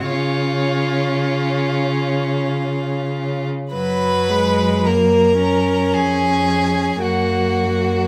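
Bathed in the wet reverb of a large studio, this short cut from a longer piece is a tender, lyrical slow romantic movement for string quartet in triple time with a rubato feel, where a rich, distant first violin sings the melody above a clear, up-front second violin line, a smooth, distant viola accompaniment and a focused cello bass, each bowed with vibrato, before the music moves into a new section at 3.7 s.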